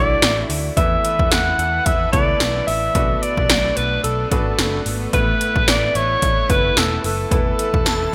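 A warm alto saxophone leads this nostalgic, glossy 1980s-style pop excerpt at 110 BPM with a light swing, its vibrato, subtone and scooped notes sitting up front with a touch of delay over a clear concert grand piano, a dark, foam-muted picked electric bass and a lush, detuned unison pad with chorus in the background. Electronic drums with a punchy kick, gated snare, metallic hats and tambourine enter at 0.2 seconds, and a shimmering FM bell with an ensemble chorus halo sounds a brief A5 at 7.9 seconds. The bright digital production is bathed in moderate plate reverb, with chords moving from Dadd9 through Esus4 and Bm7.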